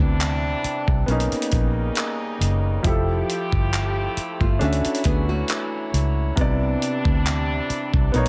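Romantic and dreamy, this short contemporary R&B cut moves at a slow 68 BPM in 4/4, with a gentle swing on the sixteenths and tuning set slightly low at A4 = 438 Hz. A clear grand piano carries the accompaniment, intimate and naturally sustained with its action noise audible, while a muted French horn section holds nasal, metallic chords from a distant, roomy position, gently pumping under sidechain compression. Up front, a vintage foam-muted fingered electric bass sits dark and round, and from 0.2 s a gritty, compressed sampler-style soul drum kit joins with a thumpy kick, hi-hat and handclaps, its sound re-recorded in a small room. Between 4.4 and 6.3 s a small, fingerpicked nylon-string guitar adds delayed arpeggios. The harmony drifts through lush major-ninth chords, Cmaj9, Bmaj9, Fmaj9 and Dmaj9, before returning to Cmaj9, all set in a light small-room reverb.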